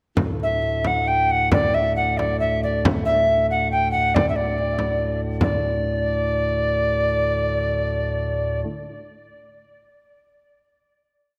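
Rustic and ancient in mood, this short medieval dance in 3/4 and D major moves with a straight feel from about 133 to 154 BPM, speeding up until 7.8 seconds. A mellow alto recorder carries the modal melody with ornaments, its pure wooden tone tongued with vibrato, a touch of chiff and tape echo. Beneath it a chamber organ's nasal cornet stop holds a low drone, while a deep, dry frame drum struck with hard hands keeps an evenly spread pattern until 5.6 seconds, and the piece closes on a final chord in a reverberant recital hall.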